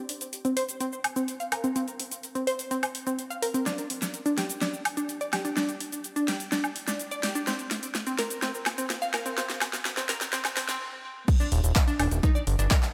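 Hopeful and uplifting, this progressive house piece builds for 11.3 seconds as a glassy, crystalline wavetable pluck spins bright, chorused arpeggios with delay, sidechain pumping and a filter sweep over a big-room dance kit of huge snare, handclaps, metallic hi-hats, shaker, woodblock and crash that rolls into a drum fill, then after a brief stop the drop lands on Ebmaj7 with an overdriven, deep electronic kick and a fat, detuned analog bass carrying tube saturation and sidechain pumping, all set in a lush hall reverb.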